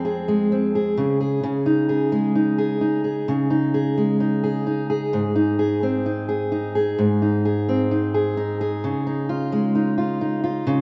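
Pop in a hopeful, heartfelt mood at a slow 65 BPM, this short passage cut from a longer piece features a solo fingerpicked steel-string acoustic guitar, up front with a warm concert tone, moving through Fm, Dbsus2, Ab and Dbadd9 and bathed in a lush, wet hall reverb within a rough home-demo mix.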